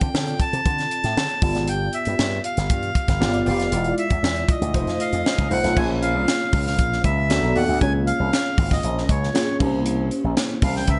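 From the first moment, a reedy, up-front accordion carries the melody over a worn, slightly out-of-tune tine electric piano with ensemble chorus, a bright, punchy slap bass run through an envelope filter, and a crisp fusion kit with a high-tuned snare, dark cymbals, and gated reverb. This nocturnal, slick slice of polished 1980s jazz-funk pop moves at 117 BPM in a straight 4/4, cycling through chords like Dm7, G7 and E7b9 before settling into Bb minor at 5.8 s, where a new section opens on Bbm7 and drifts through Db6 toward C7b9. Light studio reverb frames the mix, and the passage is cut from a longer piece.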